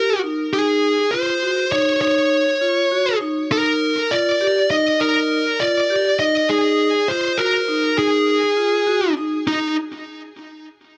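Progressive instrumental in a driving, bright 5/8 at 202 BPM, cut from a longer piece, where an up-front, high-gain lead guitar carries a distorted, picked melody with digital delay while a ringing, metallic vibraphone, played with medium hard mallets and motor off, adds delayed arpeggios over Eb and Gbsus2 chords in a small room until the guitar stops at about 9.7 seconds and the vibraphone at about 9.8 seconds.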